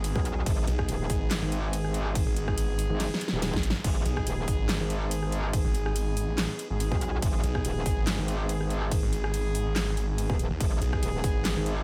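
Heavy wobble dubstep at 142 BPM in G# minor with a swung half-time feel, this chaotic fragment cut from a longer piece pairs a growling, detuned sawtooth bass and a metallic, chorus-laden FM wobble bass, both distorted, overdriven and up front, with a punchy, tape-warm electronic kick and a big-room dance kit of huge snare, metallic hats, handclaps, rim clicks and crash cymbal that breaks into a fill at 3.0 seconds, while a soft-edged classical brass ensemble places tape-echoed stabs in the background of a dry mix held on a G# minor chord.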